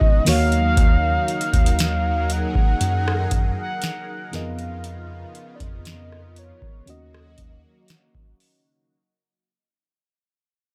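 Contemporary R&B at a slow 59 BPM in Eb minor, carrying a late-night, longing mood as it fades out across the whole excerpt. A horn-like synth lead with vibrato, chorus and tape echo sings the melody over a soft, dark FM electric piano, a smooth detuned analog pad and a booming drum machine with a deep kick, crisp snare and metallic hats sitting up front. A clean tine electric piano enters at 0.3 s to play the bass line under an Ebm7 to Db13/F and back to Ebm7 progression, all inside a digital ambience.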